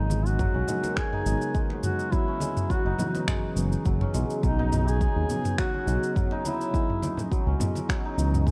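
A soft-attack duduk carries a folk-style melody with scooped notes, falling silent at 7.3 s in this mystical, organic downtempo piece with a light swing. Bright, shimmering santur arpeggios with a vintage 12-bit sampler grit and delay ring over muted, felt-like synth keys and a warbling, nostalgic lo-fi pad, both pumping and chorused in the background. A smooth, up-front synth bass and a deep electronic kick anchor an afro-pop kit of cabasa, finger snaps and toms, while hard-hand congas sit further back in a small room, all within a dark, warm, dry production.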